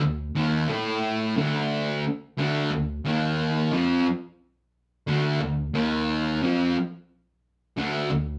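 Ominous and sludgy, this brief metal fragment cut from a longer piece puts a lone, double-tracked fuzz guitar up front, its picked, distorted, warm tone grinding low through a D5 power chord before shifting to D minor at 2.0 seconds, all in a moderate room reverb that captures a band playing live together.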